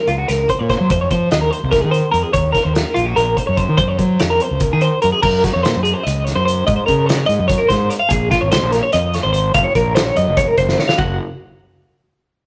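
A rough rehearsal-room recording with a moderate stone room reverb frames this intricate, playful slice of math rock and midwest emo, cut from a longer piece in a straight 7/8. A bright, twangy twelve-string electric guitar sits up front with clean, picked, compressed arpeggios touched by tremolo, moving through chords such as Fm7, Ebm7 and Gb(#11). Beneath it, a fingered electric bass growls with overdriven fuzz, also up front. A loose indie drum kit of kick, snare, hi-hat and crash adds a punchy kick, a fat snare and dark cymbals in a pumping room with a rolled-off top. Midway the harmony shifts to Absus4, Bbm7 and Gbmaj7#11, and a drum fill at 10.7 seconds leads into a brief closing stretch where the chords fall away at 11.0 seconds.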